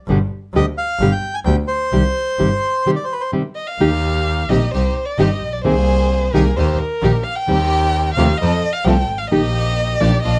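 This tense, sultry tango excerpt opens with a dark, fingerpicked nylon-string guitar, its classical tone marked by finger squeak, over a bowed double bass that sounds earthy and biting with light vibrato, both up front at 130 BPM in 4/4 with a rubato feel. A reedy, close-miked bandoneon carries the melody from 0.6 s, dry and full, in C harmonic minor over chords moving from G to Cm. After a break from 2.9 s, the music shifts to Eb major at 3.8 s, where a violin takes a solo, bowed with vibrato, soft attack and expressive portamento. A smooth, even symphonic string section adds bowed stabs beneath it, while the harmony passes through Abadd9/C, F and Eb/Bb. The production is dark, with moderate studio reverb giving the ensemble a sense of room.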